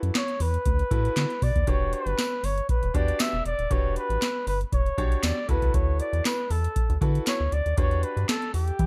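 A straight 4/4 groove at 118 BPM drives this slick, funky slice of early-eighties boogie funk in E dorian, cut from a longer piece. A booming analog drum machine sits up front with a deep kick, crisp snare, metallic hi-hat and handclaps, its gated reverb and short room lending a tape-warm punch. Alongside it, a rubbery square bass bounces with a hollow, nasal tone, a filter pluck and a moving notch, reaching down to D#1. A trumpet with bucket mute enters at 0.2 seconds to carry the melody, veiled and breathy with light vibrato and scooped notes in a jazz-style solo voice. A clear grand piano comps through chords moving from D69 to Em9 and back, ending on Em7, while a jingly tambourine joins in the background at 2.2 seconds, all set in a small room ambience.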